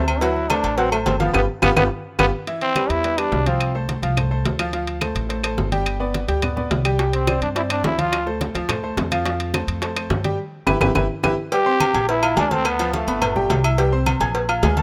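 A growling, raspy trombone with vibrato plays the melody up front in recurring phrases, over a bright, slightly detuned upright piano and a dark, thumpy pizzicato upright bass on gut strings, opening this joyful, danceable salsa. Ringing agogo bells and timbales sit close and dry alongside woody claves, thick-skinned low-tuned congas and round, saturated cowbell and bongos, which drop out at 2.3 seconds and return at 7.0 seconds. Band accents and drum fills punctuate the groove, and light reverb and small-room ambience give this cut from a longer piece the rough feel of a home demo.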